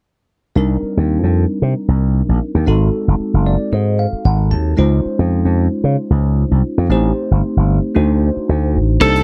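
Electric jazz fusion at 113 BPM in 4/4, with a light sixteenth-note swing and a driving, nocturnal mood, cut from a longer piece. For most of its length, from 0.6 seconds, a bell-like tine electric piano with a phaser plays the accompaniment over a growly, up-front slap bass through an envelope filter, the bass sitting louder in the mix than the keys. The electric piano adds a fill between 3.2 and 4.8 seconds as the harmony moves through rich extended chords, from Cm9 and Ab7b9 to Dbmaj9, Am7b5 and D7b9. Only at 9.0 seconds do a slightly broken-up, compressed lead guitar and a crisp, gritty drum kit with a punchy kick and crash cymbal arrive, just as the passage ends. The sound is dry and close, with little reverb.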